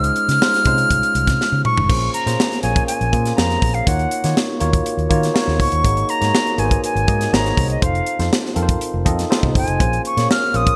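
A straight 4/4 groove at 122 BPM drives this polished 1980s jazz-funk pop excerpt in Bb minor, where a tight funk drum kit with bright cymbals, a high-tuned snare and gated reverb rolls through a fill from 1.4 to 1.9 seconds, a dark, foam-muted fingered bass stays round and punchy, a worn, slightly out-of-tune tine electric piano adds lightly overdriven chords with subtle chorus, and an up-front concert flute carries a pure, straight-toned melody over Dbmaj7, Bbm7, Ebm7, Ab7sus4 and F7 changes for a nocturnal, urban mood in a bright digital production.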